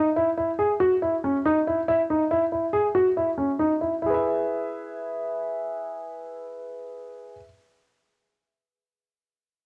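A lone grand piano opens this short, driving fragment of a progressive instrumental, cut from a longer piece. Moving in an intricate 5/4 with a straight feel, it sits up front with a present, long-sustaining tone, its sound colored by cassette tape. The harmony begins on a rootless C#madd9 voicing and shifts to E at 4.0 seconds, where a new section starts, all within a compact range from C#4 to E5. Light reverb and the ambience of a small room frame the home cassette recording with a warm intimacy. The piano falls silent at 7.4 seconds, shortly before the fragment ends.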